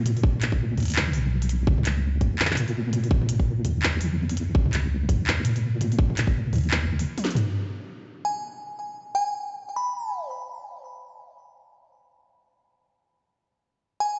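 Half-time drum and bass at 167 BPM with a swung 16th feel, dark and tense, built on a rootless Bmaj9 chord and cut from a longer piece. A deep, wobbling sawtooth bass with chorus sits up front under a tight electronic kick and a layered kit of handclaps, crisp low-passed hats, a cracking snare and toms, all stopping by 7.4 seconds after a drum fill and band accent at 7.2 seconds. A crystalline FM bell with chorus and digital delay then enters at 8.2 seconds, ringing in a stone-room reverb that suggests a big sound system in a bare space, with the top end rolled off.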